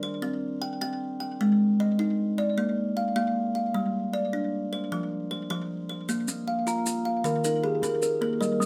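In a straight 12/8 pulse at 102 BPM counted in dotted quarters, this short Southern African traditional piece turns on a hypnotic, mbira-style interlocking cycle in Bb mixolydian. A bright kalimba with a hollow box and a thumbnail pluck opens alone, ringing up front through arpeggios from Eb3 to G5, with a slapback echo trailing each note. At 6.1 seconds grainy maracas slip in close behind, and at 6.3 seconds a second kalimba joins with a mellow, soft fingertip pluck on a solid board, spanning Eb3 to Eb6 and sitting a touch lower in the mix. The chords move through C5, Ab5, Bb, G5 and F5 before the cycle returns on Bb5 and Eb, and a kalimba adds a fill at 8.4 seconds. Light reverb and close, detailed microphones keep the woody plucks intimate in this warm excerpt cut from a longer performance.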